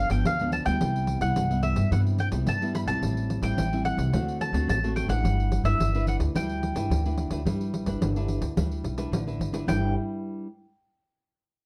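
A straight 4/4 samba-and-choro groove drives this playful, joyful snippet from a longer piece, with a jingly, close and dry pandeiro beside a woody pizzicato upright bass that sits up front, both beneath a full-bodied, fingerpicked nylon-string guitar, its finger squeaks audible, moving through G7, Cmaj7, Am7, D7 and G6, while a picked, double-strung mandolin sings the melody in its upper register, the whole set in a dark, warm production with light reverb.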